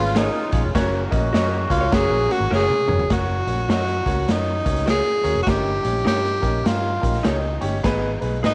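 A breathy tenor saxophone leads this joyful, uplifting stretch of uptempo 1960s-style soul, singing up front in a jazz style with vibrato, subtone and scooped notes, at 101 BPM with a swung 4/4 feel in F# major. Beneath it, a woody, open upright piano plays accompaniment, while a vintage muted fingered electric bass adds a round, foam-muted, amped low end. A raw garage drum kit, punchy in the kick with a medium-tuned snare and a rolled-off top, sits up front in a bright stone room and drives the groove on hi-hat, kick, snare and toms, with a drum fill from 2.5 to 3.1 seconds. In the background, a tight classical-style woodwind section holds sustained chords with a soft attack and light vibrato until 3.1 seconds, and an electric guitar through a small old amp adds slightly broken-up, lo-fi, compressed picked stabs. The harmony moves from C# to F#, later reaching D#7/G and G#m, all set in light studio reverb in this excerpt cut from a longer piece.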